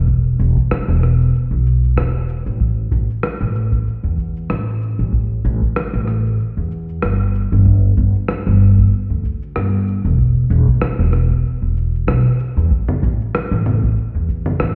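A muffled digital ambience, heard as if through a wall and washed in stone-room reverb, hangs behind this smooth, relaxed sunset chillout excerpt with a light swing. A woody, thumpy pizzicato upright bass sits up front in the low register, while a gritty, overdriven sampler-style soul kit adds cabasa, rim clicks and toms in a small room, and a deep, tape-warm electronic kick sounds as if re-recorded in a large space. The groove shifts into a new section at 12.7 seconds before this cut from a longer piece ends.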